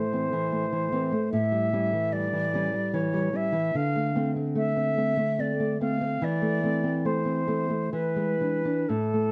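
Opening together, an airy, straight-toned silver concert flute with a crisp attack sings a yearning, elegiac melody over a dark, thumb-plucked nylon-string guitar accompaniment in this brief romantic duo excerpt, moving with rubato at 73 BPM in 3/4 through A minor harmony, tuned to A4 = 437 Hz and set in a moderate studio reverb.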